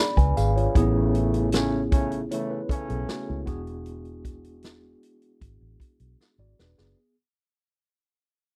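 A dry, close studio sound with a 1970s feel frames this short cut from a longer piece of lush soul, which fades out across its whole length. At 77 BPM in a straight 4/4, the mood is cinematic and bittersweet, moving from C#7b9 through Amaj7 to E9. A mellow tine electric piano opens at 0.0 seconds with a clean, up-front accompaniment heard through its built-in speakers, joined almost at once by a dark, foam-muted fingered bass with a round, punchy tone and an acoustic drum kit with a punchy kick and medium-tuned snare. A jingly tambourine sits in the background, while a warm, close-miked trombone section adds pop-style stabs from 0.8 to 3.4 seconds. The drums close the passage with a fill starting at 6.2 seconds.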